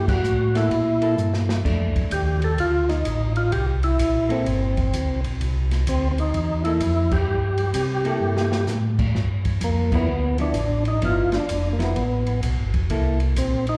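Heard as a live gig through the venue's PA, this short cut from a longer soul jazz organ trio piece sits in a moderate club reverb with a recital-hall glow around it. At a swinging 128 BPM in 4/4 and C mixolydian, the mood is soulful, moving through a rootless C13, then F6 and G13 harmony. Up front, a percussive tonewheel organ carries the melody with a lightly overdriven, full bite, second-harmonic percussion, chorus vibrato, a slow rotary speaker and slapback echo. A second, mellow tonewheel organ supplies a round, clean bass line through its own slow rotary speaker and chorus vibrato, while a vintage hollow-body electric guitar comps underneath with a picked, shadowy tone and slapback echo. The open acoustic jazz kit brings a boomy kick, a medium-tuned snare, hi-hat, ride and crash with dusky cymbals, adding a quick fill near 1.2 seconds as the band hits accents at 7.0 and 9.9 seconds.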